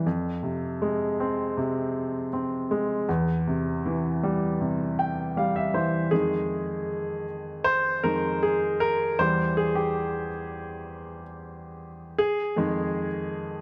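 Bathed in a lush hall reverb, this heartbroken, melancholic pop piece in F minor at 79 BPM, cut from a longer work, features a clear, polished baby grand piano placed up front and playing alone from E2 to G5, moving from Fm through C/E to a fill at 4.6 seconds before a solo passage from 6.1 seconds that drifts between Fm7 and Em.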